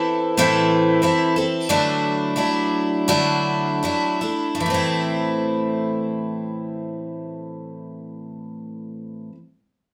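A shimmering, octave-doubled twelve-string acoustic guitar opens this wistful, reflective folk fragment in A dorian, its picked accompaniment sitting up front with audible finger squeak. Moving from Am to Dadd9 at 1.7 seconds and back to Am at 4.6 seconds, the 4/4 pulse sits between 75 and 95 BPM and slows down over the first 4.6 seconds. A wet studio reverb gives the sense of a band playing live in one room, and the passage is cut from a longer piece.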